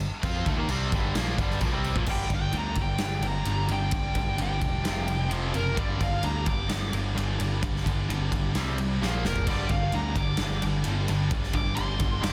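A bright, high-gain lead guitar solo with distortion and digital delay enters at 2.1 seconds over a driving, aggressive hard rock groove in G minor at 130 BPM, cut from a longer piece, where an up-front arena drum kit with a punchy kick, medium-tuned snare and big natural room sound adds a fill at 9.0 seconds, a warm, punchy picked electric bass anchors the low end, and three picked rhythm guitars play the riff (a very quiet distorted one, an overdriven one in the background, and a tight, double-tracked distorted one also in the background), all within a dense, heavily limited modern master.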